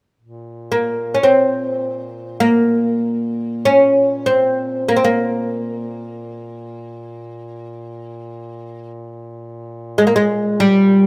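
Mournful and longing, this Caucasian folk lament in free time and Bb dorian opens with a mellow, smooth-topped duduk holding a faint low drone on Bb2 from 0.2 seconds, joined at 0.7 seconds by an up-front, woody, plectrum-plucked fretless oud with double strings carrying the melody between G3 and Db4, all heard in a small room with the rough feel of a home demo, cut from a longer piece.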